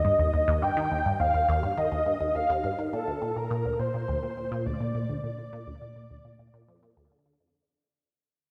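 A breathy, flute-like synth lead carries the melody in this luminous, cosmic ambient fragment at 104 BPM, its soft, warbling vintage tone colored by ensemble chorus and analog delay until it stops at 6.9 seconds. Beneath it, a squelchy, resonant blip pluck plays a low riff through phaser and analog delay as the harmony moves from Eb to Bb. A lush concert hall reverb bathes the passage, which fades out from 1.4 seconds onward.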